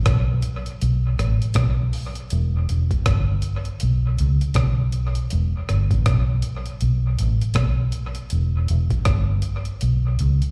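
This recording sounds like a live gig heard through the venue's PA, with recital hall reverb around it even though the parts themselves carry little reverb. It is a short roots reggae passage cut from a longer piece, moving at 80 BPM in 4/4 with a 16th-note swing, and its mood is hypnotic and serious. A vintage muted fingered electric bass plays from 0.0 to 10.4 seconds, sitting up front with a dark, round, foam-muted tone that is amped and punchy, ranging between E1 and C#2. A breakbeat sampler-style drum kit joins at 0.1 seconds, also up front but quieter than the bass, using hi-hat, kick drum and rim click. Its sound is compressed, pitched up and gritty, with a thumpy kick and a dub echo on the kit.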